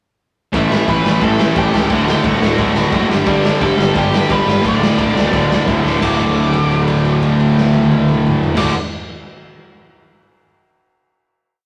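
A driving straight 4/4 punk rock burst, upbeat and energetic, where a raw garage drum kit with a punchy kick and medium-tuned snare pounds out a two-step groove under eighth-note power chords from a bright, compressed distorted electric guitar, an overdriven hollow-body semi-hollow guitar and a double-tracked tight distorted guitar, plus a growly fuzz-picked electric bass, while a biting overdriven lead guitar plays a motif-based melody partly doubled in octaves, until a drum fill at 5.8 seconds leads into a final held D chord from 6.0 seconds, all captured as a rough rehearsal-room recording with light reverb and saturation.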